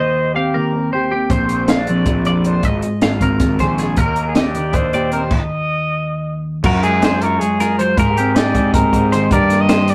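A rough rehearsal-room recording with light reverb catches a wistful, intricate stretch of math rock and midwest emo in 7/8, opening on a dark, fingered electric guitar, a bright, twangy twelve-string electric guitar picking arpeggios and a brief, punchy vintage trumpet melody with vibrato, before a growly, fuzz-overdriven picked bass and a compact cocktail drum kit with dark cymbals, a high-tuned snare and a tight kick come in at 1.3 seconds, the trumpet returns at 4.0 seconds, and a stop at 5.3 seconds leads into a new section.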